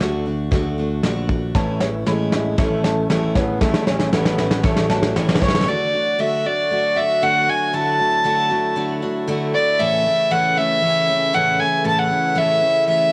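A nasal, reedy fiddle with a gut-string tone carries the melody up front from 5.4 seconds in this anthemic, nostalgic indie folk passage, cut from a longer piece and moving at 117 BPM in a straight 4/4 over D and A chords. Before it arrives, a building arrangement gathers. A bright, full-bodied picked dreadnought acoustic guitar plays throughout, joined at first by a growly picked electric bass and a dark, smooth brush kit with a punchy kick, which plays a drum fill across the opening. A very quiet grand piano, a plunky fingerpicked open-back banjo in the background, and a solo trombone with vibrato playing a classical-style second line come in around 1.5 seconds, then drop away along with the bass and drums near 5.7 seconds. From there, a tight brass section holds sustained chords beneath the fiddle and guitar, and the recording carries a homemade cassette character with light reverb and small room ambience.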